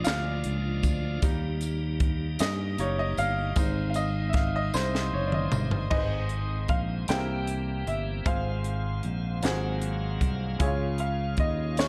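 A slow gospel sway in 6/8 at 51 BPM, this soulful, reverent piece in Ab major opens with a woody, brilliant upright piano taking a solo over a piping tonewheel organ with a slow rotary speaker and light overdrive, while a crisp fusion drum kit with a high-tuned snare and punchy kick joins a round, up-front fingered electric bass and a jingly tambourine in the background. A drum fill from 4.7 to 5.9 seconds leads into the second section, where a bright concert grand piano with deep bass carries the melody over changes moving from C7 through Fm/Ab and Ab13 to Db. The dark production sits in light reverb, and the tambourine drops out as the grand piano enters.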